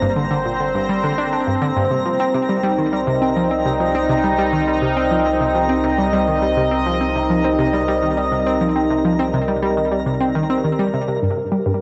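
A straight 4/4 pulse at 103 BPM drives this cosmic, expansive stretch of sequencer-driven space music in C minor, cut from a longer piece and moving from Gm to Cm7 at 1.9 seconds before returning to Gm at 11.2 seconds. Up front, a bright, sawtooth-edged analog pluck with chorus, delay and a filter sweep plays a riff over a sweeping, detuned, wave-folded pad that holds sustained chords through chorus and phaser. A deep, round triangle-and-sine bass sits low beneath a twinkling granular texture with an octave-up shimmer, all bathed in a lush hall reverb and the soft grain of a home cassette recording.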